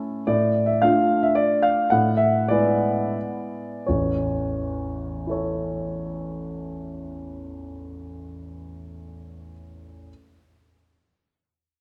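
Dotted rhythms in a rubato triple time give this short excerpt of a romantic classical dance its proud, graceful bearing, as a solo grand piano, natural and up front, ranges from deep bass to its upper register over chords moving through Dm/A and E7/A, slowing until it settles on A at 3.9 seconds, all set in a moderate concert hall reverb.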